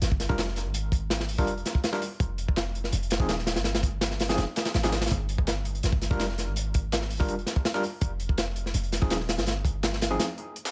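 Dark and atmospheric, this drum and bass excerpt with a jungle edge runs at 165 BPM in G phrygian, moving through Gm7, Fm7 and F7(no3) over roughly 10 seconds cut from a longer piece. A crunchy, saturated breakbeat kit with a tight kick sits up front, while a second, compressed sampler-style break with filtered hats and snare and a tape-warm grit lies in the background, and a deep, boomy 808-style bass with a sine core and a noise layer holds the low end between Eb1 and Ab1. From 0.3 seconds an overdriven, barky tine electric piano plays bright stabs through a combo amp, colored by medium tremolo and dub echo, all set in a studio ambience.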